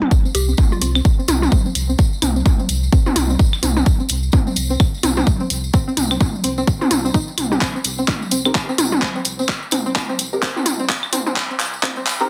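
A punchy, tape-warm electronic kick sits up front in this cool, clinical minimal techno excerpt, joined by a layered house kit of handclaps and hi-hat, electronic toms and claves, a close, jingly tambourine, and a round, dark analog bass that pumps under the kick, all riding a swung 16th-note groove. A twangy, string-like resonator pluck plays a bright riff through chorus, cassette tape and tape echo, with a filter sweep across the whole build-up, while a woody, mallet-like synth pluck flickers briefly at 0.3 seconds. A drum fill begins at 7.6 seconds, and at 8.5 seconds a muted, detuned dub chord stab enters with phaser and dub echo, all inside a small room and a dense, heavily limited master.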